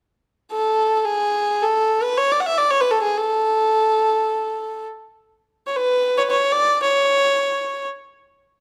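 Festive yet stately, this brief fragment of a longer Persian piece in free time unfolds in dastgah mahur on A, as a single up-front kamancheh carries the melody between G#4 and F#5 from 0.5 to 7.9 seconds, its biting, earthy bowed tone coloured by light vibrato, portamento and an airy bow, captured by close, detailed microphones within a moderate recital-hall reverb.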